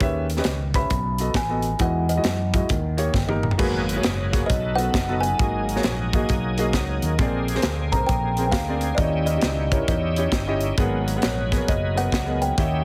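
An uptempo gospel excerpt in G# minor at 134 BPM with a swung 4/4 feel opens on an intimate concert grand piano with audible action noise, a round, dark fingered electric bass and a punchy, up-front studio drum kit, joined at 0.8 seconds by a woody, ringing kalimba melody and at 3.6 seconds, just after piano and drum fills, by a shouting tonewheel organ with key click, overdrive and slow rotary speaker holding sustained chords over moves like D#7b9b13, G#m11 and A#9, the whole carrying a fervent, solemn mood in a heavily compressed radio sound with light reverb.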